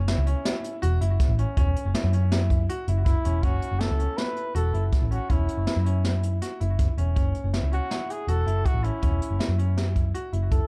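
A dark, warm production with little reverb frames this tense, intricate progressive instrumental, cut from a longer piece, moving at 161 BPM in an uneven 5/4 with a straight feel in F# minor. A hollow-body short-scale electric bass, picked, round and amped, sits up front from the first instant, anchored around an F#7(no3) chord. A brushed jazz kit with a high-tuned snare and punchy kick comes in with it, heard as a small, roomy space with a rolled-off top, while a brilliant, polished grand piano spins short-sustained arpeggios through tape echo. At 3.0 seconds a mellow trumpet enters with the melody, played in a classical style as a distant, roomy solo, also touched by tape echo. The bass and drums carry the most weight in the balance, with piano and trumpet set further back.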